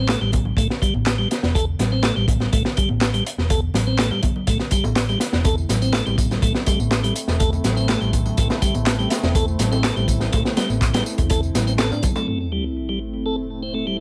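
A crunchy, saturated breakbeat kit at 123 BPM drives this energetic, gritty A minor breaks piece, its tight kick and high-tuned snare up front, with dry analog handclaps and tambourine plus bright, compressed congas and bongos in the background. A round, hollow-body picked electric bass holds the low end while a piping, scooped tonewheel organ riff with key click runs through a stopped rotary speaker, low-pass filter and digital delay. At 5.3 seconds a warbling, nostalgic lo-fi pad enters with chorus, phaser and sidechain pumping, and at 12.3 seconds the groove gives way to an electronic sub drop impact that sounds beneath the organ and pad to the end at 14.0 seconds.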